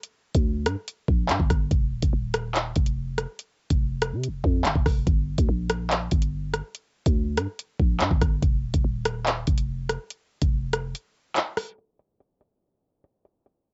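Recorded at home on cassette with a dry, dull top end, this short cut of cold, menacing drill hip hop moves at 143 BPM in 4/4 with a half-time feel. An electronic drill kit of knocking kick, bright hi-hats, handclaps and rim clicks sits up front with a taped, worn character, while a growling 808-style bass with a fast attack and decaying sine tone enters at 0.3 seconds and holds the low end from Eb1 to C3. The bass drops out at 10.9 seconds for a brief break, and the drums carry on into a short closing section.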